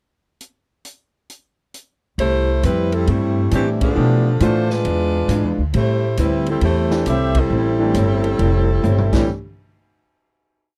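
Swinging and dramatic, this short big band swing piece in A minor moves at 136 BPM with a swung eighth-note feel. The drum kit opens alone at 0.4 seconds with a pickup bar, its dark cymbals, medium-tuned snare and punchy kick driving a ride cymbal pattern. At 2.2 seconds the saxophone section enters up front with a clear, vibrato-rich, motif-based melody of call phrases harmonised in four-part block voicing, over a woody, thumpy upright bass walking beneath. A boxy fingerpicked steel-string acoustic guitar plays jazz chord shapes with four strumming in the background, and from 3.5 seconds a baby grand piano adds intimate, syncopated comping in quartal voicings, its action noise audible. Band accents punctuate the minor-key progression through a half-diminished and altered dominant chord, a drum fill leads out, and the piece closes on a final hit in a dry, close 1970s-style studio sound.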